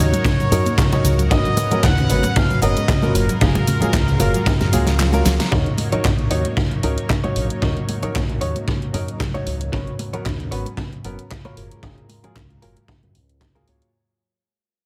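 This excerpt of a longer nu-disco piece opens straight into a groovy, sensual drop in Eb minor at 114 BPM, with a lightly swung sixteenth-note feel and chords moving between Ebm7, Abm11 and Gbmaj9. A tight, bright trumpet section carries the melody with light vibrato and digital delay until 5.2 seconds, over brilliant baby grand piano chords with a worn, intimate character, audible action noise and short sustain. Beneath them sit a lush, detuned sawtooth unison pad with chorus, a very quiet warbling vintage pluck playing arpeggios, and a round, punchy fingered bass whose envelope filter gives it character, while the piano, pad and bass all pump against the sidechain. The rhythm comes from a saturated, boomy acoustic kick that sits up front, a layered electronic pop kit with a fat snare, handclaps, hi-hat, ride and shaker, and damped, thick-skinned congas kept close and dry in the background. 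A drum fill starting at 4.5 seconds leads to a band accent at 5.4 seconds, with the kick dropping out from 5.0 seconds. From 5.5 seconds a clean, scooped, direct-recorded electric guitar riff with subtle chorus and delay joins as a filter sweep plays on an analog synth pad and the music fades out, all set in a light small-room ambience with a heavily compressed, radio-like sound.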